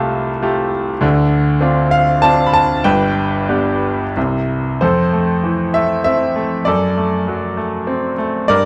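Warm and hopeful, this brief fragment of lyrical classical solo piano moves in a rubato 3/4 at 99 BPM, its brilliant, intimate grand piano sitting up front with audible action noise and long sustain across a range from G1 to B5, drifting through Fadd9/C, Dm7 and G before a pause and settling into F major at 4.8 s with Fmaj7 and D7/F#, all cushioned by a moderate recital hall reverb and a dark, warm production.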